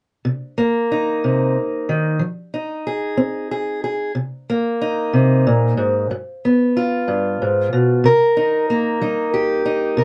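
Smoky and brooding, this slow minor-key blues in 12/8 moves at 62 BPM. A lone fingerpicked steel-string parlour guitar, dark and boxy in tone, sits up front and walks through Cm7, Fm7 and G7 before settling back on Cm7 at 8.0 s. A short booth ambience and a muted top end keep the sound close and intimate in this fragment of a longer piece.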